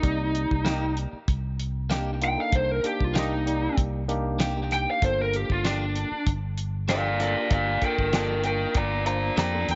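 A damped 70s drum kit with a fat snare and tight kick sets a straight-eighth soul blues groove at 96 BPM in G minor, its sixteenths lightly swung, while a round, punchy fingered electric bass sits up front beneath a tine electric piano heard through its built-in speakers. Over Cm7 and Gm7 chords, a lead guitar through a small cranked amp solos throughout, overdriven and lo-fi, and a bright, compressed clean electric guitar adds stabs with tape echo from 0.6 seconds. The mood is smoky and brooding, with light reverb and a rolled-off top end in this short cut from a longer piece.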